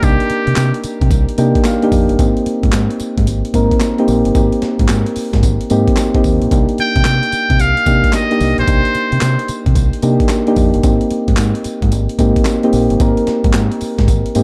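A dark production with light reverb frames this confident, bouncy new jack swing R&B excerpt at 111 BPM, swung on the sixteenths and moving between Cm7 and Abmaj7. Up front, a gritty, compressed breakbeat sampler-style kit with a thumpy kick, snare, hi-hat, handclaps and tambourine sits over a round, punchy fingered dub bass with tube saturation. Soft, warbling electric-piano-like synth keys with chorus carry the accompaniment and add a short fill near the start, while a buzzy, breathy trumpet with metal mute plays a brief jazz-style phrase at the opening and returns from 6.8 to 9.6 seconds, thin and intimate.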